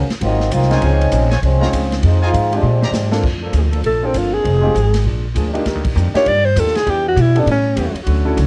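Cup-muted trombones, mellow and veiled, open this energetic big band swing snippet over growly, woody upright bass, a very quiet clean hollow-body guitar and an airy drum kit with dark cymbals and a punchy kick; an intimate grand piano with audible action noise and soft-attack trumpet stabs join at 0.7 s, a drum fill at 2.6 s ushers in sustained chords from a clear trombone section, and a close-miked alto saxophone with vibrato takes the up-front melody from 3.9 s, in a dry home cassette recording.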